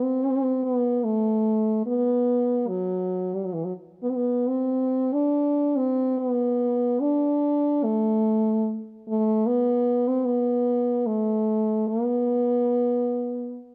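Caucasian folk lament in B phrygian, a longing and mournful passage in a rubato 3/4 that drifts between 64 and 76 BPM, tuned to A4 = 435 Hz. A mellow French horn plays alone and up front for the full 13.6 seconds, moving between E3 and D4 in a classical style with soft attacks and light vibrato. Close, detailed microphones and light reverb lend the horn a roomy, distant air, and the passage is cut from a longer piece.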